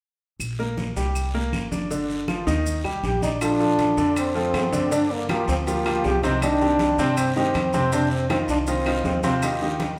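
A straight 4/4 salsa groove at 160 BPM in Bb major sets a festive, sunny mood from 0.4 s, with a thumpy pizzicato upright bass on gut strings and a raspy guiro, while bright thin-skinned congas, woody claves and grainy maracas sit tucked behind it. Up front, a brilliant upright piano with short sustain and audible action noise carries the accompaniment, joined at 3.0 s by a clear, punchy trombone melody with light vibrato, while ringing metal-shell timbales enter in the background at 3.4 s. The band plays live in one room, bathed in a large, wet studio reverb, in this passage cut from a longer piece.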